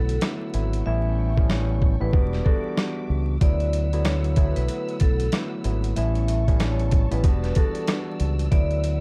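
Dark, dry production with vinyl crackle frames this confident, warm boom-bap hip-hop excerpt in D major at 94 BPM with a swung 16th feel, where a gritty, pitched-down sampler-style drum kit with a thumpy kick enters at 0.1 seconds (its hi-hats dropping out from 0.9 to 3.4 seconds), a round, deep fingered electric bass sits up front, a barky, lightly overdriven tine electric piano carries the accompaniment, a metallic vibraphone with slow motor vibrato plays a ringing melody, and a lush bowed string section holds sustained chords in the background over a D6/9, A7 and Em7 progression.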